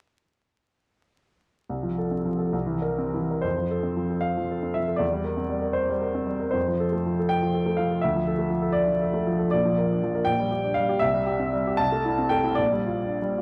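A 6/8 pulse moves with free rubato, drifting between 58 and 84 BPM counted in dotted quarters, in this passionate romantic character piece for solo piano in F major. An upright piano carries everything alone from 1.7 s, its clear, woody tone slightly detuned and sitting up front, with long sustain across a span from Bb1 to A5. A brief opening phrase rests on F over C and a C7 before a longer second passage begins at 3.4 s, moving through F, C7 over E, D minor and Bb, then settling into a run of changes on Gm over Bb, C, Am over C and Gm7 over Bb. The close, detailed miking sits inside a moderate recital hall reverb, while a vinyl crackle lends the warm sound a worn, intimate edge. Lifted from a longer piece, the passage stops at 13.4 s mid-thought.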